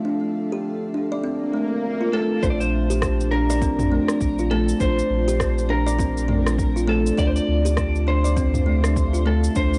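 A blurred, granular cloud pad and a very quiet, metallic bronze singing bowl open this earthy, meditative organic downtempo piece at 101 BPM with a swung feel, as an up-front, woody kalimba rings out thumb-plucked arpeggios through tape echo and shimmer reverb, an up-front electronic swell arrives at 1.4 s, a clean lap steel guitar enters at 2.1 s with slide melody and volume swells, and at 2.4 s a round, pumping sine sub bass joins a deep, tape-warm electronic kick and a kit of rim clicks, shaker and toms, all over Dm, Bb and Dm7 chords with the hazy character of a home cassette recording.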